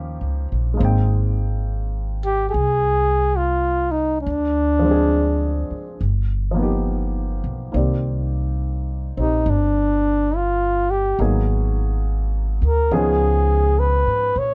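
A woody, polished upright piano and a growly, thumpy pizzicato upright bass open this intimate, late-night jazz ballad at a slow, swung 69 BPM, joined at 2.3 s by a mellow, soft-attacked flugelhorn that carries the solo melody up front over a dry, close-sounding backdrop of rich seventh, ninth and altered chords.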